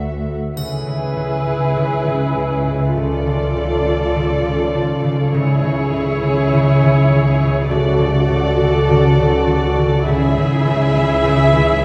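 In a straight 4/4 at 101 BPM, this uneasy, eerie suspense cue, cut from a longer film score, rests on veiled, con sordino chamber strings: a muted violin section carrying the melody and another the second line, violas accompanying up close, and cellos and double basses holding the bass with vibrato. A ringing, fingerpicked concert harp repeats a riff on C#3, while a warbling, lo-fi tape-like pad sustains chords in the background with chorus. A dark triangle sounds only from 0.6 to 1.7 s, and the whole ensemble is heard from further back in a wet scoring-stage reverb as the harmony shifts over a C# bass, from E/C# through Dm/C# to C#m.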